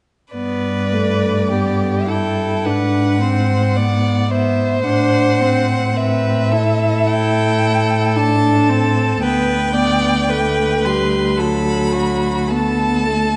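Lyrical and warm, this slow, rubato romantic string quartet movement in G major drifts at 51-56 BPM through a concert hall's moderate reverb, with a rich, smooth first violin singing the melody high above a focused second violin line, a dark, airy-bowed viola offering intimate accompaniment, and an up-front cello grounding the bass with expressive vibrato and portamento, while an altered A-flat seventh chord briefly colors the harmony before it settles toward D.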